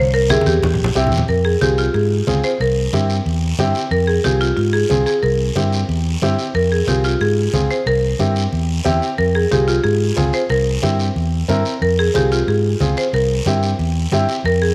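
A bright, woody marimba struck with hard mallets carries the melody from the very first beat, its close-miked, dry tone sitting full and percussive in the middle register between F4 and C5. This is a danceable, driving cumbia excerpt at 182 BPM in straight 4/4, set in F harmonic minor, cut from a longer piece and alternating between F minor and C7 chords after an opening drum fill that runs to 1.3 seconds. Underneath, a fingered electric bass sounds dark, round and amped, pushed up front as it anchors the low end. A vintage upright piano with a smooth, long-sustaining tone fills in the accompaniment from 0.3 seconds, sitting a little further back. Thin-skinned, low-tuned congas, compressed and saturated yet very quiet, join with a raspy guiro that carries a live-room feel, and the whole mix is wrapped in a moderate echo-chamber reverb.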